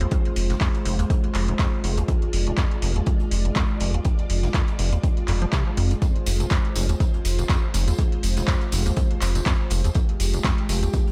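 Raw and driving, this swung acid house excerpt sits on a single F minor chord, with an overdriven, punchy electronic kick up front, a deep, round analog bass, a squelchy, resonant square-wave acid bass riff thick with tube saturation, analog chorus and tape echo, and lush vintage string machine chords, all three pumping to the sidechain, while an electro drum machine adds claps and metallic hats, a very quiet open jazz kit lays in airy hi-hat and snare, and a jingly tambourine joins at 6.0 s, all set in an echo-heavy studio reverb.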